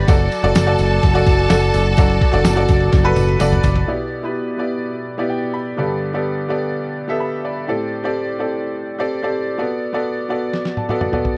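A bright, woody upright piano drives this uplifting piano-driven pop fragment. Its worn, slightly detuned tone sits up front throughout and ends with a fill of its own from 10.5 to 11.4 seconds. At the start, a lush, distant violin section adds a bowed second line with focused vibrato, while a direct electric bass anchors the low end; both stop at 3.8 seconds. A lo-fi, sampler-style drum kit, muffled and pitched down with a thumpy kick, joins a jingly tambourine in the background for the opening in straight 4/4, then returns with a fill at 10.5 seconds. In between, the piano plays alone over chords moving from Em7 through Gadd9 and D7sus4 to Bm7, and the dry, close 1970s-style studio sound with light reverb gives the whole a warm feel.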